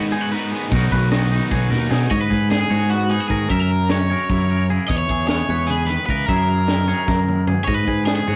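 Two twangy, clean electric guitars open this playful, bright math rock and midwest emo passage in 7/8, one comping with harmonic tremolo and the other fingering high arpeggios, beside a double-tracked, overdriven stack guitar riff that stops at 2.1 s; a crisp, airy fusion kit with a high-tuned snare and punchy kick joins almost at once, followed by a growling, up-front fingered bass with overdrive at 0.7 s and a cranked lead guitar melody from 2.1 s, all captured in a rough rehearsal-room sound with saturation and moderate reverb.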